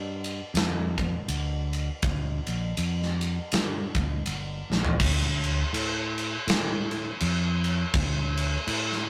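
Brooding and sludgy, this short cut from a longer stoner and doom metal piece crawls along at 81 BPM in D minor, with a swung 4/4 feel and tuning set to A4 = 436 Hz. A picked electric bass, growly and amped with overdrive, holds the low end beside a big acoustic rock kit that sits up front, its punchy kick, medium-tuned snare, toms, ride and crash sounding mid-forward with a rolled-off top. A drum fill at 4.6 seconds leads into a new section at 5.0 seconds, all captured as a rough rehearsal-room recording with little reverb.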